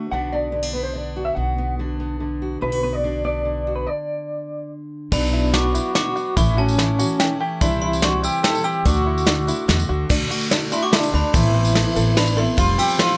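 A slightly broken-up electric guitar through a small old amp carries the yearning, bittersweet melody with a wavering tremolo across this short indie folk excerpt in a straight 3/4 at 144 BPM, over a woody, thumpy pizzicato upright bass and, at first, a fingerpicked steel-string acoustic guitar sitting up front. After a brief stop, the arrangement builds at 5.1 seconds: a full-bodied picked acoustic guitar with audible finger squeak, a plunky open-back banjo playing arpeggios, a sparkling glockenspiel second line struck with brass mallets, a jingly tambourine and a brush drum kit with a punchy kick and bright cymbals all join in. Light reverb surrounds the mix as the chords move from B minor through A, C and D toward Amadd9 and Fsus2.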